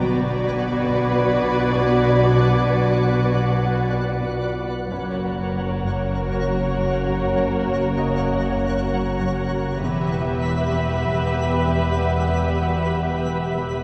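Tense and ominous, this cinematic excerpt moves in a straight 4/4 through B minor, F-sharp and E minor chords, carried by muted, con sordino string sections: veiled violins on the melody and a second line, lush violas, cellos on a bass line and a very quiet riff, and double basses in the background, with a higher violin texture heard only until 4.6 s. A mellow French horn section holds soft-attack chords in the background, while a twinkling granular texture with octave-up shimmer sustains chords above and an eerie, metallic inharmonic drone with chorus and phaser hums beneath. A very quiet, bright grand piano with audible action noise adds brilliant texture, and the whole ensemble sits at a distance in a wet scoring-stage reverb.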